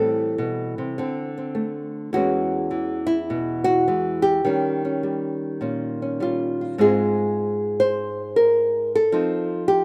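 A loose swing at 104 BPM in 4/4, stretched with rubato, carries this brief, playful and sophisticated solo jazz passage for nylon-string guitar, cut from a longer piece. The fingerpicked guitar sounds small and up front, with audible finger squeak, as it moves through Am7, D5, E69 and D#9 before shifting into Ab major on an Ab69 at 6.8 s and reaching F7 at 9.1 s. Light reverb and studio ambience frame a rough home-demo sound.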